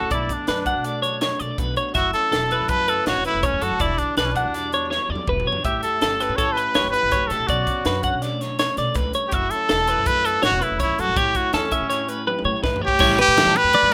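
Math rock and Midwest emo in 5/4 at 163 BPM, bright and intricate, with an up-front clear trumpet carrying a smooth, vibrato-laced melody over warm arpeggios from a clean twelve-string electric guitar, both touched with slapback echo. Beneath them, a slightly broken-up, lo-fi electric guitar through a small old amp comps the Bm9, F#m7, Em9 and A9 changes, a woody, dark pizzicato upright bass anchors the low end, and a crisp, gritty fusion drum kit with bright cymbals and a high-tuned snare fills around 4.9 and 12.3 seconds. A crunchy, double-tracked overdriven guitar riff bursts in at 13.0 seconds on the closing A7sus4, all in a dry, rough home-demo mix cut from a longer piece.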